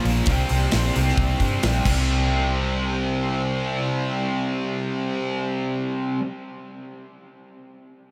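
A straight 4/4 pulse from a big acoustic rock kit, with punchy kick, snare, hi-hat and crash, drives only the first 2.0 s of this hazy, melancholic shoegaze and dream pop fragment, while an up-front, double-tracked fuzz guitar riff with lush chorus and a dark, round, foam-muted picked electric bass carry on to about 6 s, the whole mix soaked in a huge ambient reverb that lends it a dreamy haze.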